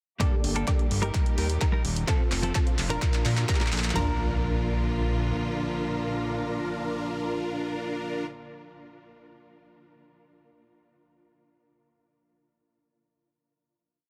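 A punchy big-room drum kit with a huge snare and four-on-the-floor kick drives this euphoric, anthemic progressive house piece through a build with a drum fill and a filter sweep on the detuned supersaw stab riff, while a fat analog bass, clean picked electric guitar chords, a lush symphonic string pad, a very quiet bright pluck arpeggio and transition effects from 2.3 seconds carry it to a final chord at 4.0 seconds.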